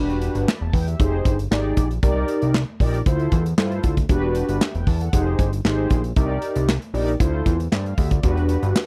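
A fat, detuned analog bass of sawtooth and square waves with a plucky filtered attack drives this slick, danceable early-eighties boogie funk at 116 BPM, alongside a punchy, up-front studio drum kit of kick, medium-tuned snare, hi-hat and handclaps in a pumping room, and a mellow, round, dark synth brass with chorus and vibrato sustaining a repeating Em9, Fm9, Cm9, Dm9 progression in a dry, close mix.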